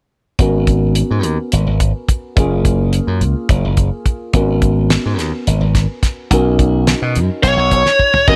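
Riding a straight 7/8 groove, this funky, driving electric jazz fusion excerpt is anchored by a punchy, bright slap bass and a damped 70s drum kit with a fat snare and tight kick, both up front in a dry, nearly reverb-free sound. Beneath them, a dark, boxy grand piano comps at a lower level through G#m11, F#maj9 and Bmaj9 chords. At 7.4 s a bluesy overdriven lead guitar cuts in with a distorted, picked phrase as the piano plays a fill, and the drums add a fill of their own at 7.9 s.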